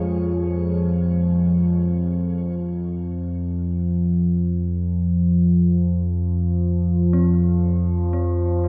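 Unsettling and cavernous, this dark ambient drone excerpt drifts in free time, anchored by an up-front analog drone of nasal, evolving sawtooth and pulse-wave tones with slow attack and long release, sustained through chorus across the full 8.7 seconds. Above it, a dark detuned synth bell plays arpeggios with an eerie, inharmonic, warbling FM character, fading in from 0.1 seconds through chorus, phaser, tape echo and shimmer reverb. A moderate spring reverb and echo-heavy mix deepen the sense of space, with the music tuned to A4 = 438 Hz and cut from a longer piece.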